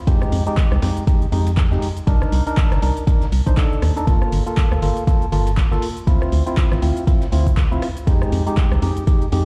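Swung sixteenths at 120 BPM drive this late-night deep house fragment, where an up-front deep electronic kick and a layered kit of handclaps, smooth hi-hats, rim clicks and shaker sit over a gritty, overdriven sampler-style kit of ride, hi-hat and medium-tuned snare tucked in the background, while a dark, hollow FM bass with organ-like bite pumps beneath nasal, mellow organ stabs dressed in chorus, analog delay and sidechain pumping, moving through Fm9, Cm9, Gm9 and Dm9, the whole mix heard as if through a big sound system in a bare room, with cassette tape grain and a large studio reverb.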